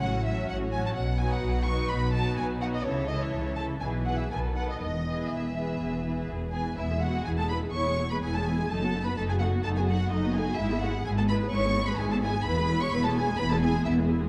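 A string orchestra starts together in a quick, cheerful movement in the classical style, its lively pulse flexing with rubato. The first violins carry the melody above the ensemble with a focused vibrato and a smooth top, while a second violin section, rich yet distant, traces a lower line beneath them. Violas fill in the accompaniment with an even, lush sound, and the cellos and double basses share the bowed bass line. The production is dark, set in a reverberant scoring-stage ambience. A second section begins at 6.8 seconds, and the violins fall away at 13.9 seconds, leaving the lower strings to close this fragment of a longer piece at 14.3 seconds.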